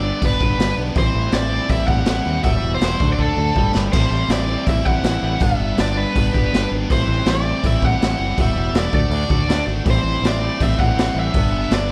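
An overdriven lead guitar carries the melody through spring reverb and slapback echo over a slightly broken-up riff from a guitar played through a small old amp, a scooped high-gain guitar with distortion and analog chorus, a growling, punchy fingered bass, and a saturated, boomy garage drum kit in a pumping small room that enters at 0.2 seconds and fills from 3.2 to 3.9 seconds, giving this moody, bittersweet indie rock excerpt a close, dry sound.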